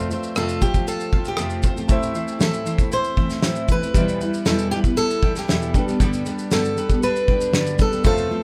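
A loose indie drum kit in straight 4/4 at 117 BPM, with a punchy kick, fat snare, rim click and shaker in a pumping room, drives this wistful, reflective acoustic pop excerpt, where a bright fingerpicked steel-string guitar with finger squeak and tape echo carries the melody over a full-bodied, double-tracked fingerpicked guitar, a round mandolin's arpeggios and a dark, woody upright piano in the background, moving through F, Am, Em and G in a rough home demo mix with light reverb.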